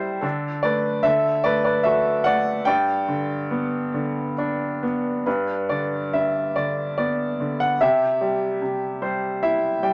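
Calm and tender, this lyrical classical excerpt in G major sways gently in 3/4 at around 67-75 BPM with a rubato feel, as a bright, woody upright piano plays solo and up front across G2 to G5, its long sustain and audible action noise lending an intimate character within light reverb, with a fill opening the passage and another arriving at 8.6 seconds as the harmony moves through D, G and C.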